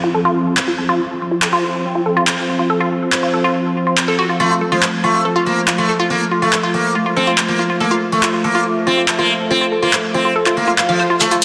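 A straight 4/4 pulse at 141 BPM drives this psychedelic trance passage in F major, cut from a longer piece, with a driving, psychedelic mood. From the first second a bubbling, resonant sawtooth texture holds sustained chords in a random-stepped filter haze, while a woody wave-folded pluck spins a percussive riff through chorus, 12-bit sampler grit and dub echo, both under a filter sweep. A drum and bass kit enters at 0.6 s, overdriven and up front, with handclaps, bright high-passed hats and a woody snare. At 4.4 s a buzzing, shimmering sitar takes the melody, its plucked tone run through phaser and dub echo. Background effects frame the passage, a downlifter at the start and a swell rising from 10.5 s into a drum fill at 11.2 s, where a grainy, mellow shekere appears briefly. The whole sits in a lush hall reverb under a dense, heavily limited modern master.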